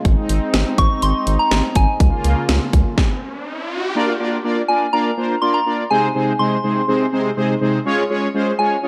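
Synth-pop in a cool, melancholic mood, this short cut opens with a brassy, detuned analog pad carrying chorus and tremolo, a deep, round square-wave bass and a punchy, up-front house drum kit with a cracking snare, while a soft, pure FM bell sings the melody with chorus and slapback echo in light reverb; the pad, bass and drums drop out around 3.0 seconds as an electronic riser sounds, and from 4.0 seconds a bold, fat analog synth brass takes over the accompaniment.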